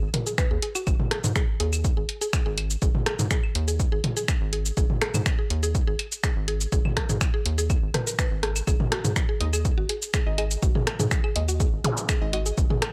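A rubbery, hollow square bass pumps against an up-front punchy kick, snaps, cabasa, hi-hat, claves, rim clicks and toms in this cool, hypnotic minimal techno excerpt at 123 BPM in G# minor, with a woody, mallet-like pluck riff carrying chorus and analog delay, a nasal, phased dub chord stab arriving at 9.4 seconds, and a brief electronic zap at 11.8 seconds, all captured as a dry, gritty hardware recording.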